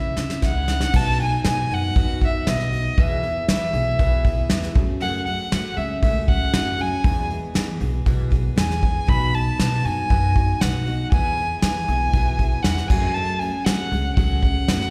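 A bowed fiddle carries the melody up front, its tone warm and smooth with a light vibrato and a slapback echo, played by one player in an even, high register. This is an anthemic indie folk excerpt in E major at 118 BPM in a straight 4/4, cut from a longer piece with an arrangement that builds. A soft brush kit opens with a short fill in the first 0.9 seconds, sitting up front with punchy kick, a medium-tuned snare and dark cymbals in an airy, polished room. A pizzicato upright bass adds a woody, dark low end, while a bright picked steel-string acoustic guitar fills in the accompaniment with its own slapback echo. The harmony moves through C#m, B, E and F#madd9, and the whole performance sounds like a live gig heard through the venue's PA, wrapped in a recital hall reverb.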